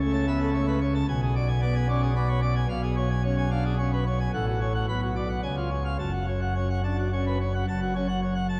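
A solo pipe organ on full plenum, with brilliant mixtures and baroque voicing placed up front, spans from deep pedal notes up to a high treble in this dramatic, majestic classical toccata fragment in three-four time, cut from a longer piece and resolving to a minor chord at 6.0 seconds, all heard through a cavernous church reverb and the warbling pitch drift of worn old cassette tape.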